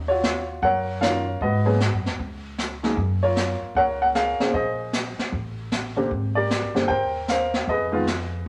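Jazz piano trio excerpt with a late-night, smoky mood, swinging at 153 BPM as a woody, short-sustained upright piano carries the melody up front over a thumpy pizzicato upright bass on steel strings and a roomy, distant brush kit with a high-tuned snare and boomy kick, all moving through chords such as Ebm9, Gbmaj9 and Abmaj9#11 in a wet studio reverb.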